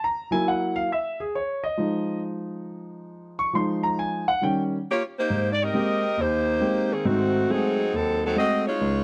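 Close, detailed microphones and light reverb give this short cut from a longer jazz piece an up-front sound, swinging at 137 BPM in 4/4 with a dramatic, brassy mood. A warm, natural grand piano carries the accompaniment alone through rich seventh chords in F minor, and a mellow saxophone section enters with the melody at 4.9 seconds. The tune moves to Ab major at 5.3 seconds, where the horns play as a tight, smooth-topped section with light vibrato over lush Abmaj9 and Ab7b9 harmonies.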